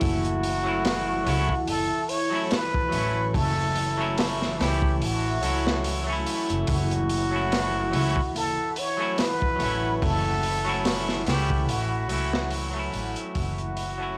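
A plunger-muted trumpet with wah-wah, vibrato and scooped notes sings through dub echo over a hypnotic, brooding 72 BPM trip hop groove in F# minor, where bright clean electric guitar shimmers with harmonic tremolo, a dark detuned pad with chorus, 12-bit sampler grit and plate reverb sustains an F#m7 chord, woody pizzicato upright bass thumps below, and a crunchy, saturated breakbeat kit swings gently, all wrapped in cassette tape warmth, vinyl crackle and a small room before fading out from 11.1 to 14.2 seconds.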